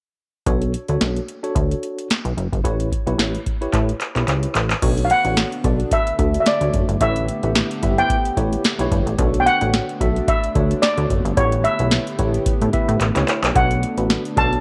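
Lightly reverberant and funky, this late-night early-eighties boogie funk excerpt in B minor at 110 BPM sets a booming analog drum machine with a deep kick, crisp snare and metallic hats against a punchy, resonant analog bass and a worn, slightly out-of-tune tine electric piano that sounds as if heard through built-in speakers, before a dark chorused pulse-width pad enters in the background at 4.8 seconds and an up-front steel pan melody with slapback echo joins at 5.0 seconds, with drum fills marking the turnarounds.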